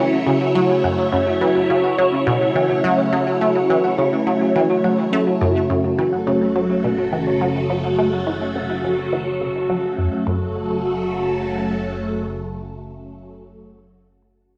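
Expansive and cosmic, this fragment of sequencer-driven space music sits in F# minor at 105 BPM, anchored by a swirling, up-front string machine that holds bright sustained chords through ensemble chorus and phaser. A juicy, squelchy blip pluck with a nasal, detuned edge plays a low riff through phaser and tape echo, while a round, tine-like thumb-piano pluck spins gentle arpeggios in the background with chorus and echo, then fades under a filter sweep from 5.7 s. At 6.3 s a mellow, evolving analog drone settles quietly onto F#1 before fading, all of it bathed in wet studio reverb with the grain of a cassette home recording.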